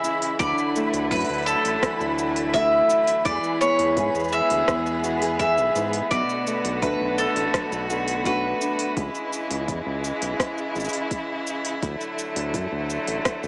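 A bright bowl-back mandolin carries the picked, double-strung melody up front with digital delay until 8.9 seconds in this autumnal, wistful folktronica clip at 84 BPM in 4/4. Around it, a fingerpicked nylon-string guitar plays delayed arpeggios, a rich string quartet holds smooth, vibrato-laden chords, and a deep, round analog bass arrives at 0.4 seconds beneath a soft, overdriven electronic kick. An overdriven electronic kit of cabasa, smooth hi-hat and rim click, plus a flickering, grainy texture drifting in the background, fill out a Dadd9–E–Bm7–C#m progression, all heard through moderate reverb with a small-speaker character.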